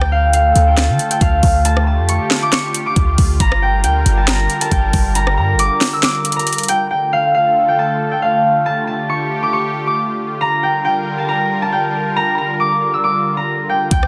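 This hip hop cut in a trap vein moves with a half-time feel, melancholic and menacing, over a Dm to Gm7 progression heard twice in this fragment of a longer piece. A thumb-plucked concert harp carries the melody up front, its ringing high notes trailed by tape echo, while a smooth, vintage sawtooth pad sits lower in the mix with detuned, warbling chorus and slow-attack sustained chords. A clean, sine-like 808-style bass booms deep and mellow beneath, and the electronic trap kit brings a knocking kick, sharp overdriven snare with soft clipping, metallic hi-hats, rim clicks and finger snaps. The kick drops out shortly before the drums stop at 6.8 seconds, the bass having already fallen silent at 5.7 seconds, leaving harp and pad alone until both bass and drums return briefly at 13.9 seconds. Light digital reverb surrounds a dense, heavily limited modern master.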